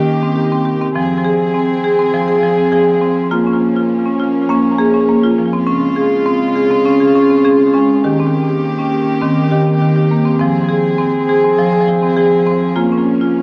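World meditative music in F minor, built around tuned percussion and moving at 102 BPM in 4/4 with a light swing on the sixteenths, this excerpt from a longer piece has a hypnotic, meditative pull. A marimba played with medium hard mallets carries the arpeggios up front from start to finish, its rosewood bars sounding woody, percussive and dark, touched with tape echo and shimmer reverb. Beneath it, a chamber string section holds sustained chords throughout, bowed with light vibrato and an earthy bite under a smooth top, sitting lower in the mix and bathed in its own shimmer reverb. The harmony cycles from Eb through Fm, Bbm and Db before returning to Eb and Fm and reaching Bbm at 12.8 seconds. A recital hall reverb surrounds the pair, and a worn cassette character adds a warbling pitch drift to the whole recording.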